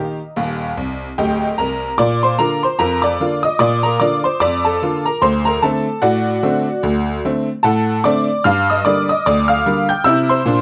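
A solo tack piano, metallic, jangly and set up front, opens this lively, jaunty ragtime fragment in a swung 2/4, tossing in a honky-tonk fill from 0.8 to 2.0 seconds before a new section at 2.0 seconds moves from Bb through D7 and Gm to C7, captured by close, detailed microphones with light reverb.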